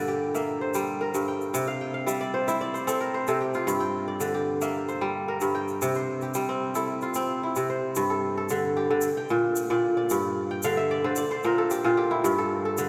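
A long, cathedral-like reverb surrounds this recording, which sounds as if it was captured in a church or concert hall and is cut from a longer piece. It is West African traditional string music at 112 BPM in 4/4 with a straight feel, set in G dorian, and its mood is reflective and flowing. The kora sits up front, its bright, crisp, fingerpicked arpeggios ringing across a span from G2 to G5, with two fills that decorate the line, one early and one near the close. A grainy egg shaker enters at 0.3 seconds and keeps a much quieter percussion part with a small-room character. The harmony moves between G minor and C until a new section at 8.0 seconds shifts to G5 and B-flat, with a brief chordless moment before it settles back on G5 at 12.2 seconds.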